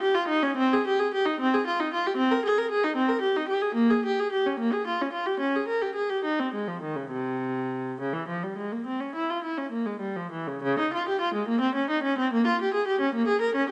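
Classical, baroque-style suite movement for unaccompanied viola, flowing and solemn in a rubato 12/8 at roughly 62-76 BPM, tuned slightly below standard pitch at A4 = 437 Hz. A single bowed viola sits up front with a rich, smooth, even tone and vibrato, ranging from C3 to Bb4 as the music moves into a new section at 10.6 seconds. A moderate recital hall reverb surrounds the instrument, and the top end is rolled off in this short cut from a longer piece, ending at 13.7 seconds.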